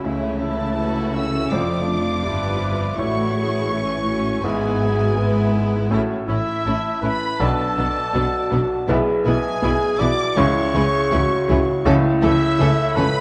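A hopeful, uplifting cinematic passage in A major, cut from a longer piece, opens with the full ensemble at a rubato 81 BPM: a rich violin section sings the expressive, vibrato-laden melody above a second violin line and a present solo oboe. Beneath them, a smooth viola section and a bright, polished baby grand piano sit in the background as accompaniment, a dark, distant French horn section holds sustained chords, and a very quiet concert harp rings out arpeggios. A focused, lush double bass section and a cello section with expressive portamento carry the bass, and the whole passage sits in wet scoring stage reverb within a warm production.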